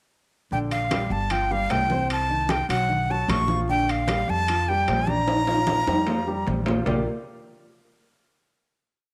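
A straight 4/4 Afro-Cuban jazz groove, lively and danceable, sets low-tuned congas with slaps and open strokes in the background beside ringing metal-shell timbales on a shell pattern and bell, while a woody, thumpy pizzicato upright bass plays a tumbao that anticipates the chords, a natural-sounding baby grand piano plays a montuno in octaves, and an up-front breathy, bright flute with vibrato and a crisp chiff carries short motif-based phrases, set in a small room with moderate echo-chamber reverb, before a drum fill from 5.3 seconds leads to a final chord at 6.9 seconds.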